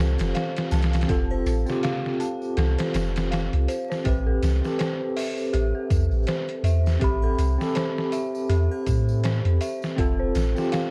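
A bell-like tine electric piano with tremolo, low-pass filtering and tape echo opens alongside an eerie, detuned FM synth bell playing chorused, delayed arpeggios, a deep, round 808-style bass up front and a gritty, pitched-down sampler-style drum kit with overdrive and studio reverb, while faint, ringing tambourine and triangle join at 0.2 s in this hypnotic, brooding trip hop fragment at 81 BPM in A minor, swung on the 16ths and moving from F to Am7 over a haze of worn cassette warble and vinyl crackle.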